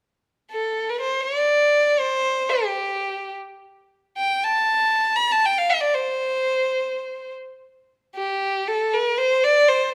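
Arabic music in free time, set in maqam rast on C, with a warm, passionate mood in this short excerpt from a longer piece. A single bowed violin carries the melody from 0.5 s, sitting up front with a rich, focused tone, expressive vibrato and a smooth top as it ranges from G4 to Bb5+48c. A moderate recital-hall reverb surrounds the playing, and the phrase moves into a new section at 8.2 s before the violin stops at 9.9 s.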